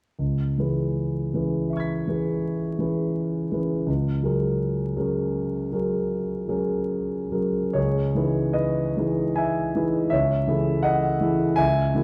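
Nocturnal and wistful, this impressionist solo piano excerpt drifts in an uneven 5/4 with free rubato. A warm concert grand sits up front with a deep bass and open tone, ranging from C#2 to B6 from 0.2 to 12.0 seconds, its harmony moving through C#m7, F#add9/C#, C#m9 and Amaj7/C#, with a new section arriving at 7.8 seconds. A wet recital hall reverb surrounds the playing, and faint vinyl crackle adds a worn, intimate texture.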